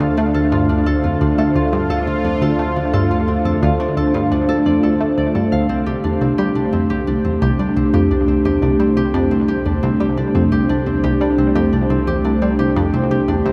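A fingerpicked concert harp rings up front with arpeggios through tape echo, set beside an evolving, full-bodied resonant pad whose detuned, slow-attack chords carry a sub octave, filter swell and chorus. Below them, a round, wave-folded analog pluck repeats a bright, detuned riff with chorus and tape echo, while a fat, saturated analog bass holds in the background. This cosmic, hypnotic ambient passage moves from Dm to Csus2 at 5.7 seconds, and a huge reverb places it in a vast, echoing space.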